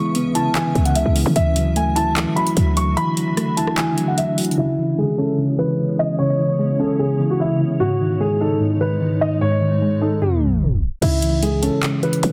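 A dense, heavily limited mix in a concert-hall reverb carries this menacing, brooding half-time trap excerpt, where a dark, boxy grand piano with audible action noise plays the melody up front through tape echo over round, chorused electric-piano-like synth keys and a blurred, detuned granular cloud pad, while a punchy, tight 808-style bass drops out at 3.0 seconds and an electronic trap kit of metallic hi-hats, handclaps, rim clicks and crash follows at 4.6 seconds as a filter sweep moves through the keys, before a tape stop at 10.2 seconds brings the bass and drums back in at 11.0 seconds.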